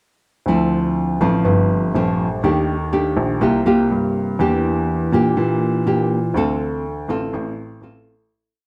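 A straight 4/4 bossa nova rhythm carries this smooth, intimate piece, with a dark, full-bodied nylon-string guitar up front, fingerpicking thumb bass and syncopated plucked chords through changes such as Dm9, G9sus4 and Ebmaj7#11, while a warm baby grand piano with audible action noise and short sustain lays down a dotted root-and-fifth bass line, all set in light reverb, with a fade-out beginning at 6.4 seconds.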